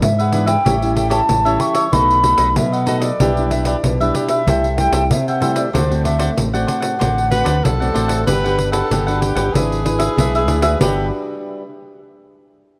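A joyful, lively samba and choro fragment in G major at 95 BPM opens with a baroque flute carrying the melody, its airy wooden tone tongued and expressive with vibrato, set at a distance. Beneath it, a thumb-plucked classical nylon-string guitar and a crisp, mellow picked cavaquinho fill in the harmony, while a round, punchy fingered electric bass sits dark and up front. The pandeiro adds a jingly, compressed and saturated pulse played with hard hands in a straight 4/4. A breathy tenor saxophone slips in at 7.3 seconds as a second line, with a soft attack, scooped notes and a whispered, intimate jazz tone, shortly before the flute drops out at 7.9 seconds. A moderate plate reverb lends the recording space as the chords move from E7/G# through A7, B7 and D7 before settling on Gmaj7.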